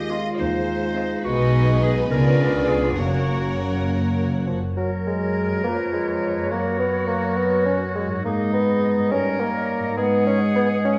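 This whimsical, playful film cue moves at 69 BPM in 6/8 in F# major, with a magical air drawn from a longer piece. A rich, focused violin section carries the melody with vibrato at the opening while a second violin line, a lush viola section, a smooth cello section and a warm double bass section support it. The double bass section adds expressive portamento, and all of the strings drop out by 4.6 seconds. Throughout, a bright, punchy clarinet and a pure, soft-edged flute section trace second lines as a mellow bassoon accompanies, mellow French horns hold sustained chords and a ringing, fingerpicked concert harp spins arpeggios. From 4.8 seconds a clear oboe takes up its own second line over the woodwinds, horns and harp. The sound sits in a recital-hall reverb with small-room ambience, colored by worn, warbling cassette tape with drifting pitch.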